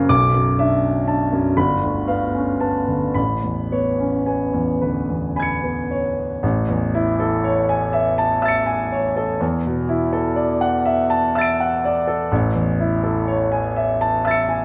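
A moderate recital-hall reverb, about 1.4 s, surrounds a concert grand piano placed up front, its tone warm and open, with a deep bass and long sustain across a range from G1 to D7. This luminous, dreamy impressionist solo piece in A major moves in a slow, rubato 6/8 at roughly 35-42 dotted-quarter beats per minute, drifting through Bm7, G9 and Amaj9 before the opening material returns at 6.4 seconds over Amaj7 and E9sus4. The passage, cut from a longer piece, arrives at Amaj7 at 12.3 seconds.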